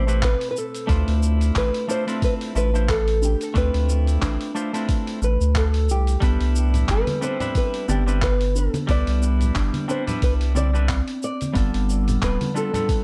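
A small, fingerpicked nylon-string guitar carries the melody from the start over a clean, bright semi-hollow electric guitar and a woody, ringing kalimba in the background, all three treated with tape echo, while a round, deep analog bass sits up front and a soft, tape-warm electronic kick joins with a gritty, compressed sampler-style kit of cabasa, handclaps and hi-hat. This sunny, smooth sunset chillout moves at 90 BPM in C major with a swung sixteenth-note feel, drifting from Am9 and Dm9 to Cmaj9 before settling on G7 at 11.6 seconds. Softly played, bright congas enter at 6.7 seconds, and the dark, dry production closes this excerpt cut from a longer piece.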